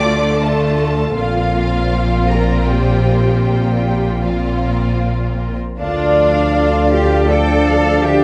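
Close, detailed microphones capture a scoring stage with a moderate reverb of about 1.6 seconds, giving this short cinematic fragment of a longer piece a sorrowful, bittersweet cast. In D minor at 78 BPM in 3/4, the pulse moves with rubato and uneven beats, while the harmony shifts from Dm to Bbsus2 and returns to Dm at 5.8 seconds. Lush bowed violins carry a high melody with smooth vibrato, a second, more focused violin line sits beneath it, and a viola section adds accompaniment with a studio warmth. Up-front double basses and a rich cello section hold the bass, while a ringing, fingerpicked concert harp plays arpeggios in the background. At 5.8 seconds a hollow, pure flute and a mellow oboe join with second lines, and a dark French horn section sustains chords from a roomy distance until the fragment ends at 8.2 seconds.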